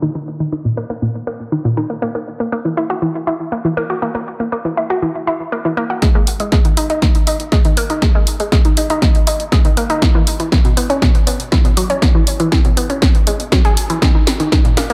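A nasal, detuned analog pluck opens this dramatic, cinematic melodic techno at 120 BPM in G# minor, spinning chorused, delayed arpeggios with sidechain pumping under a filter sweep, until at 6.0 seconds a layered, overdriven electronic kick arrives up front alongside a dry analog drum machine's punchy snare and pumping hi-hats for a drum fill and build-up, the mix soaked in a dreamy plate reverb.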